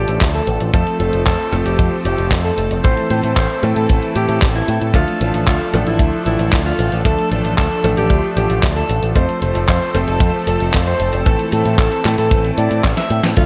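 Lightly reverberant and bittersweet, this nostalgic italo disco fragment in D minor moves at 114 BPM, with a breathy, distant alto saxophone carrying the melody through tape echo over a lush, chorused unison pad of detuned sawtooth and square waves. Underneath, a punchy picked electric bass with an envelope filter sits up front beside a tight, dry acoustic kick, while a detuned 8-bit drum machine supplies handclaps, hi-hat and a medium-tuned snare in gated reverb. A brilliant, worn grand piano joins at 0.7 seconds with gritty, filtered stabs in the background, and a drum fill from 12.8 seconds leads into a band accent at 13.2 seconds.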